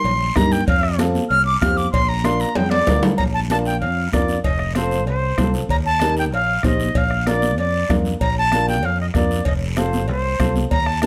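A bright, reedy concert flute opens this joyful, festive cumbia at 191 BPM in Bb major with a featured solo, up front over a warm, fingered electric bass and raspy, dry guiro, while high-tuned congas sit distant in the background. A ringing cowbell and timbales enter at 0.1 seconds, and a dark, woody upright piano and softly struck bombo join at 0.4 seconds. A drum fill leads into a new section at 3.2 seconds, where the flute's pure, vibrato-laced melody carries on over the full band in a moderate studio reverb.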